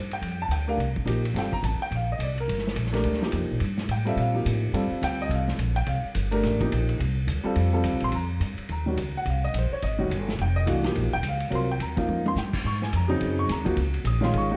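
A woody, up-front pizzicato upright bass drives this intense, spiritual modal jazz excerpt in C dorian at a swinging 212 BPM, joined by a present baby grand piano moving from C9sus4 to F9sus4 at 8.1 seconds and Ab9sus4 at 12.6 seconds, while a gritty, saturated vintage drum kit with dark cymbals and a punchy kick sits further back and adds a fill at 12.1 seconds, within a dark production touched by light reverb.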